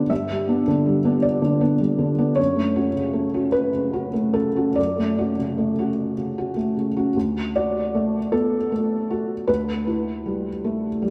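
A felt-muted upright piano carries this short neoclassical minimalist piece on its own, its soft, mellow tone sitting up front with the noise of the action clearly audible. The mood is peaceful and intimate, moving at a slow 52 BPM in 6/8 with a loose, rubato feel in D major, spanning from D2 up to F#5. Lush chorus and a diffuse ambient delay haze the piano, and a long hall reverb of 2.2 seconds soaks the whole mix in a dreamy wash. The harmony drifts from G to Dmaj7/F#, then shifts at 7.2 seconds into a second passage that settles on D before moving to Em/D. Cut from a longer work, the fragment runs just over 11 seconds, a brief, hushed glimpse that feels suspended in air.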